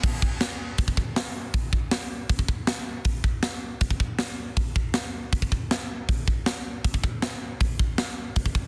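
A dense, heavily limited modern master with light reverb frames this dark, aggressive metal fragment at 158 BPM in a straight 4/4, where a tight, polished acoustic drum kit sits up front in an airy big room for its full 8.6 seconds, its bright crash and hi-hat riding over a medium-tuned snare and a tight kick drum.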